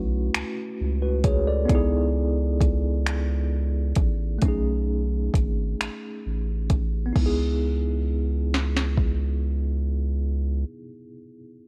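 Yearning and late-night, this slow six-eight R&B fragment pairs a clean tine electric piano with medium tremolo through a combo amp, a deep, thick saturated sub bass with a fast attack, and an overdriven electronic drum kit of soft kick, sharp snare, warm hats, finger snaps and crash cymbal that drops out at 9.2 seconds, over Dmaj9, C#m7 and B13 chords, with the dry, close mix wrapped in worn, warbling cassette-tape pitch drift.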